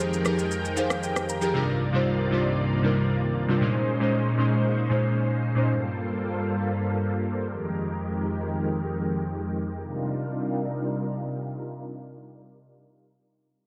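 Bathed in a lush hall reverb, this hypnotic, soulful amapiano excerpt in C minor at 116 BPM opens with a brief electronic shaker and rim click that stop at 1.5 seconds, while glassy, airy digital keys with chorus add a fill and play minor eleventh chords through a filter sweep until 5.7 seconds, and shimmering, vintage string-machine violins hold sustained chords until 12.8 seconds.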